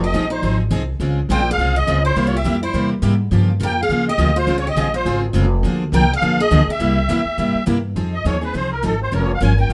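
Three picked steel-string acoustic guitars open this bittersweet, fiery F minor jazz manouche swing at 207 BPM: a squeaky second line that stops at 7.6 s, a full-bodied jumbo accompaniment, and a boxy parlour one in the background. Beneath them sits a woody, growly pizzicato upright bass up front, while a reedy, shimmering musette accordion carries the melody from 0.1 s and takes a solo at 8.0 s, all in light reverb in this short cut from a longer piece.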